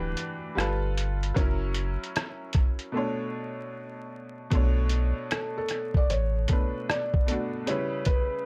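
A compressed, pitched-down sampler-style drum kit sits up front in this short lo-fi hip hop passage cut from a longer piece, its thumpy kick, hi-hat and rim click muffled and tape-warm, as if re-recorded in a small room, over a swung sixteenth-note feel in common time. Beneath it, a deep, round, sine-toned sub bass holds sustained notes until 6.5 seconds. A bright upright piano, woody, worn and slightly detuned, carries the accompaniment through extended chords such as Em11, G9, F#7 and Bm9. At 5.3 seconds a felt-muted upright piano enters with a soft, intimate melody in its upper register, its thick felt and audible action noise giving it a mellow, close character. The mood is reflective and melancholic, and the dry, gritty recording carries vinyl crackle and very little reverb.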